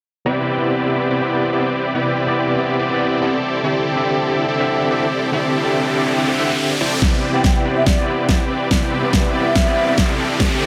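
A dreamy, emotional future bass excerpt opens on a barky, overdriven tine electric piano with tremolo and a filter sweep, joined by a huge, detuned supersaw riff pumping under sidechain and tape echo over Cmaj9 and D9sus4 in a lush hall, with a riser entering at 4.5 seconds before a knocking kick, a layered snare and a faint, boomy 808-style bass arrive at 7.0 seconds for a build-up and drum fill while a hollow, airy wooden flute with 12-bit grit and dub echo floats in the background.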